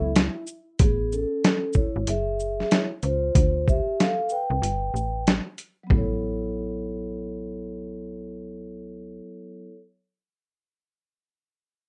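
A rough home-demo sound with light reverb frames this short jazz-hop excerpt, cut from a longer hip hop piece in A major at 94 BPM, with a swung sixteenth-note feel in 4/4 and a mood that sits between warm and cool. A gritty, compressed boom bap sampler-style kit sits up front and loudest, its pitched-down, tape-warm sound built on a thumpy kick, a medium-tuned snare, hi-hat, shaker and toms, playing from 0.2 until it drops out at 6.1 seconds. Beneath it, a snappy FM slap-style bass with a metallic, digital attack and quick decay holds the low end from the start until 9.2 seconds. A mellow, vintage-toned vibraphone played with soft mallets and the motor off rings through a band-limited haze, taking a solo from 0.8 to 5.9 seconds over chords moving from Amaj9 through F#sus2, Dm7 and Gadd9. After that passage the harmony settles on Aadd9 as the music shifts into a new section, with the vibraphone sustaining to the end.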